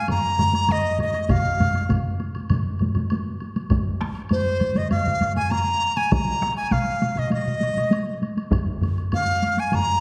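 Japanese traditional taiko drum ensemble music, ceremonial and powerful, moves at 100 BPM in a straight 4/4, centered on a Bb suspended pentatonic scale, in a ten-second piece cut from a longer performance. Up front, a close-miked dizi carries the melody between C5 and Bb5, its bamboo tone airy and buzzing from the membrane, with a soft attack, a straight but unsteady tone, and a gentle warmth. Beneath it, two taiko ensembles struck with hard sticks play throughout: one is close and acoustic, while the other is compressed and saturated. A woodblock adds a woody, live-room click at a low level. At 1.3 s, solo taiko drums with heavy sticks join close and dry, alongside a further heavy-stick taiko ensemble that stays dry in the background until 7.9 s. A wet recital hall reverb and a dark production frame the whole sound.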